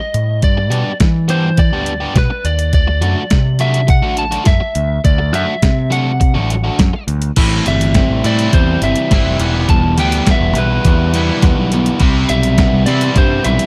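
A lightly driven lead guitar with analog delay carries the melody over a biting overdriven riff guitar, a growling, up-front picked bass and a thumpy, tape-tinged detuned 8-bit drum machine in this carefree, upbeat indie rock clip, until a bright cranked stack guitar with lush chorus and delay joins the riff at 7.4 s as the chords move from G and D to Am7, Em and Cmaj7, within a dark, dry production.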